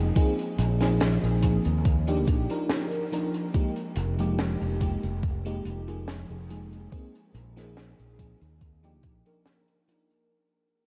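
A dreamy FM electric piano layered with a soft pad opens this woozy, nostalgic vaporwave fragment. Its detuned tone is coloured by phaser, analog chorus and analog delay, and a punchy fretless electric bass with its own chorus sheen sits up front beside it. At 0.2 seconds the beat arrives: a thumpy, sampler-style electronic kick with a tape-warm character, and a crisp fusion kit whose high-tuned snare and hi-hat sound gritty and saturated in a pumping small room. The slow, lightly swung groove moves through lush extended chords, from Bb9sus4 to Ebmaj9 and Fm11 before circling back. A huge ambient reverb soaks the mix, and cassette tape adds a faded patina. Cut from a longer piece, the passage fades out throughout, with bass and kick dropping away at 9.2 seconds while piano and kit carry on to the end.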